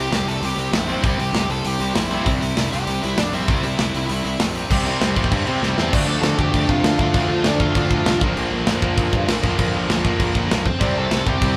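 A raw, angry punk rock excerpt at 196 BPM in 4/4 opens with a bluesy lead guitar carrying the melody, a distorted rhythm guitar and a growly fuzz bass all sounding from the first moment, joined by a tight metal drum kit with crash, hi-hat, kick and snare. At 0.9 seconds a cranked stack guitar and a second, double-tracked distorted guitar add their bright, picked riffs, thickening the wall of rhythm guitars that sits in the background. The drums are up front with a medium-tuned snare, a tight kick and a rolled-off top, while the bass pushes through direct and amped with a fuzzy bite. The chords move from C to Dm at 5.9 seconds, just after a short drum fill, then on to Bb and back to C. The lead guitar drops out at 8.2 seconds and returns briefly near the end, all captured as a band playing live in one room with light reverb.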